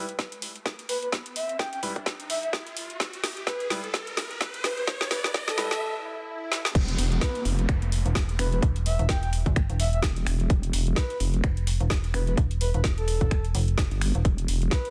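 A dense, heavily limited modern master with digital ambience carries this aggressive, gritty bass house excerpt at 128 BPM in E phrygian, where clear piano stabs pumping with sidechain and delay, a breathy, flute-like synth lead with chorus and vibrato, and riser, swell and downlifter effects build over a tight, up-front electronic kick and a garage kit of woody snare, metallic hats, finger snaps and crash. After a short break and swell, the drop lands at 6.8 seconds as a nasal, resonant vowel-sweep wobble bass with tube saturation enters, joined at 7.7 seconds by a metallic, overdriven FM bass, both dark and pumping low in the register.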